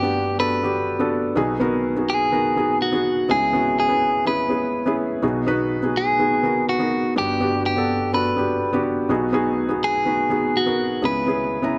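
A bright, clean electric guitar carries the melody of this hopeful pop fragment, its picked, compressed tone sitting up front in a narrow range from F#4 to B4. Beneath it, a felt-muted upright piano supplies soft, mellow accompaniment across a broad span from G1 to A#5, close and intimate, with the audible noise of its action adding a homely texture. Both instruments play together from the start to the end at 11.8 seconds, in a straight 4/4 feel, tuned to A4 = 439 Hz. The harmony circles through Gmaj7, B6 and C#m7, returning to B6 between each move and giving the passage a gently searching, warm quality. A moderate plate reverb with a long 3.6-second decay surrounds the recording, lending the up-front parts a spacious halo.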